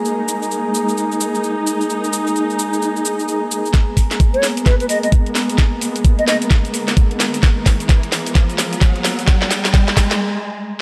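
A dark, woody string section holds lush sustained chords under a breathy, chorused pad, both pumping against the sidechain, while a garage drum kit of cracking snare, cabasa and hi-hats swings up front in this swaggering, bouncy bass house excerpt. At 3.7 seconds a knocking, tape-warm electronic kick arrives as the build-up and drum fill begin, and a mellow, close-miked silver flute with vibrato drifts through a dub echo from 4.3 to 6.4 seconds. A riser climbs beneath the fill before a short break closes the passage, all set in a light reverb.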